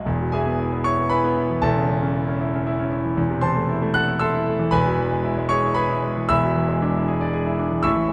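A warm concert grand piano carries this brief classical excerpt alone, a virtuoso piano study in E major that sounds heroic and brilliant. It moves at 116 BPM in 3/4, with a rubato feel that lets the pulse breathe, and the playing spans from E1 in the deep bass up to F#6. The harmony rests on E, shifts to A over an E bass, darkens to A minor over E, returns to E and turns to E7 at 6.3 seconds, all within about 8 seconds cut from a longer piece. Close, detailed microphones place the natural piano tone up front, with light reverb adding a touch of space around it.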